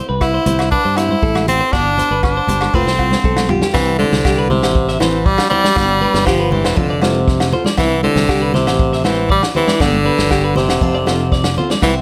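A small room gives this joyful, carefree highlife excerpt a moderate natural ambience, with an edgy tenor saxophone up front carrying the melody through a plate reverb and light vibrato over a C, G and F progression at 119 BPM in a straight 4/4. Beneath it, a bright, twangy clean electric guitar plays arpeggios with plate reverb and tape echo, while a full-bodied jumbo acoustic guitar picks out accompaniment in the background and a dark, round fingered electric bass gives a punchy low end. A vintage drum kit with a punchy kick and medium-tuned snare plays a fill from 2.7 to 3.7 seconds, and ringing agogo bells and high-tuned congas sit quietly behind the band.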